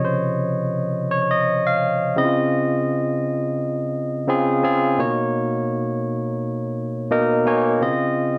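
A gently swung sixteenth-note groove in 4/4 sets a relaxed R&B mood for this short excerpt, carried entirely by a solo tine electric piano. Its tone is bright and barky, sitting clean and up front with a slapback echo and a light reverb, as it moves through lush major-seventh and ninth chords and shifts to Cbmaj9 at 5.0 seconds. A brief piano fill arrives at 6.8 seconds before the harmony settles back on Dbmaj9.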